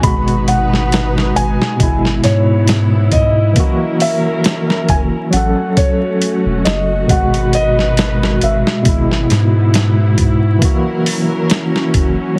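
Gritty, thumpy boom bap sampler-style drums sit up front with studio reverb in this dark, cinematic trip hop piece at 68 BPM with a light 16th-note swing, over a round, deep dub sub bass, a barky overdriven tine electric piano with tremolo, and distant, woody symphonic strings holding sustained chords, while a muted felt upright piano carries a mellow melody through tape echo until 9.3 s and a very quiet, tense bowed-like drone enters at 9.6 s, the whole mix carrying a heavily compressed radio sound and vinyl crackle.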